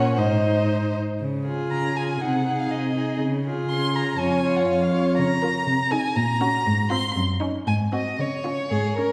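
Heard from further back in a wet scoring-stage reverb, this brief cut from a quick classical-period string quartet movement in Db major moves at 120 BPM in a straight 2/4, with a dramatic, stormy mood. The first violin carries the melody up front with vibrato, portamento and a soft attack over an expressive second violin line, a smooth, even viola accompaniment, and an intimate cello bass, also up front, played sul tasto with an airy bow; the four parts sound together from the start to about 9 seconds. The harmony moves from Ab to Db, then through Bbm/Db, Gb/Bb and Fm/Ab to an Ab7 that settles on Db at 8.2 seconds.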